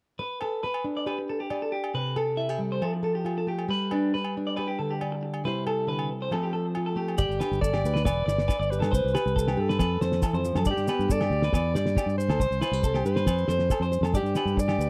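Highlife guitar band music in a carefree, sunny mood, taken from a longer piece and moving at 138 BPM in a straight 4/4 in G mixolydian. From 0.2 seconds a bright, fingerpicked nylon-string guitar lays down the accompaniment while a twangy, picked electric guitar plays up-front arpeggios coloured by tape echo, and at 0.4 seconds ringing agogo bells join in, close and dry. At 7.2 seconds the band fills out: a breathy alto saxophone takes the melody with light vibrato and a smooth top, a punchy fingered electric bass sits up front, and a cloth-damped drum kit adds a tight kick and fat snare with a dark, rolled-off sound. Grainy, mellow maracas enter at the same moment, low in the mix. The chords cycle through G, C and F, and the whole has the dry, close feel of a small 1970s-style studio room.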